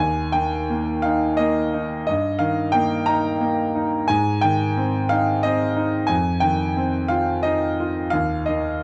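Nostalgic and serene, this brief excerpt from a romantic classical nocturne unfolds in a lilting 12/8 with a flexible, rubato feel. A solo grand piano, bright and brilliant yet smooth with a vintage character, sits up front and rings with long sustain across a range from Eb2 to Bb5, moving through Eb, Eb/G, Ab and F5 harmonies. Moderate large-studio reverb lends space, while the overall production stays dark and warm.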